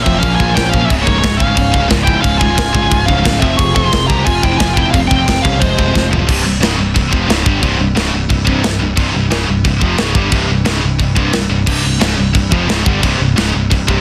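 A bright, distorted lead guitar carries the melody at the top of this relentless, dark heavy metal passage, joined by a second high-gain lead line tucked behind it, and both leads stop at 6.1 seconds. Beneath them, three picked rhythm guitars in the background drive the riff throughout: one crunchy and double-tracked, one heavy and high-gain, and one with a scooped midrange. A growly picked bass, heard both direct and through an amp, anchors the low end. The tight acoustic drum kit sits up front with a medium-tuned snare, a tight kick, crash and china cymbals, and toms, with a warm, rolled-off top. It plays a fill just before the harmony shifts from Bbm, Db and Fm to a C5 power chord at 6.3 seconds. The sound is dry and dense, with a heavily limited modern master, and the passage is cut from a longer piece.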